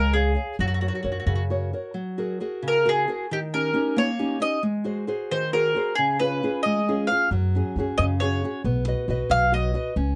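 A picked mandolin carries the melody up front, its double strings giving a woody, warm voice that ranges from F#4 to E#5. This short fragment of an Italian folk serenade moves in a rubato 6/8 at 90 BPM in F# major, with a romantic, wistful mood. A fingerpicked nylon-string guitar accompanies throughout with a small, warm tone, moving through chords such as F#add9, D#7 and G#7 before settling toward F#sus2 and B. A pizzicato upright bass on gut strings adds a dark, thumpy low end, playing at the start and returning at 7.3 seconds. Light reverb gives the acoustic trio a gentle sense of space.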